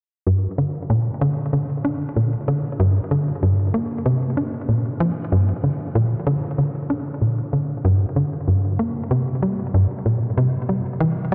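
A straight 4/4 pulse at 95 BPM drives this hypnotic, mysterious ambient fragment in G dorian, where a tight, punchy sequencer bass plays alone from 0.3 to 11.3 seconds between G2 and D4, its sawtooth and square-wave tones ring-modulated and shaped by a plucky filter with fast attack and decay, colored by cassette tape and delay, and sitting up front inside a huge, wet reverb and a dark production.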